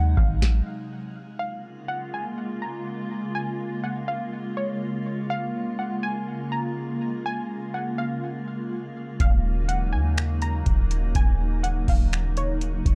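Atmospheric cloud-rap hip hop in Bb minor, this ethereal, melancholic excerpt moves at 123 BPM in 4/4 with a half-time feel. A glassy FM pad holds sustained chords throughout, its slow attack and long release softened by ensemble chorus and built-in reverb, while sidechain pumping gives it a breathing motion. Above it, a warbling, lo-fi pluck carries the melody in a detuned, dusty haze, tucked low in the mix under chorus, a low-pass filter and delay. A deep, boomy 808-style bass and a booming analog drum machine with a tonal snare, metallic hats, finger snaps and kick sound briefly at the start. The bass falls silent from 0.4 s and the drums from 0.6 s, and both return at 9.2 s as the harmony shifts from Bbm7 to Ebm7. The production is dark and dry, with the drums and bass sitting up front.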